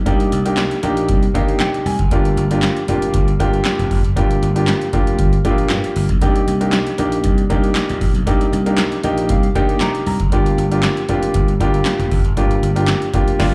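A growly, punchy slap bass opens this funky, danceable slice of early-eighties boogie funk, cut from a longer piece. An analog drum machine joins almost at once, sitting up front with a deep kick, a punchy snare, metallic hats, handclaps and a crash cymbal, its tape-warm tone carrying the feel of having been re-recorded in a small room. A grand piano supplies intimate accompaniment with audible action noise and a slapback echo, stepping forward with fills at 1.1 seconds and again at 8.8 seconds. The harmony moves between Cm9 and Gm7 over a straight groove in 4/4. The whole performance comes across as a live gig heard through the venue's PA, wrapped in club reverb.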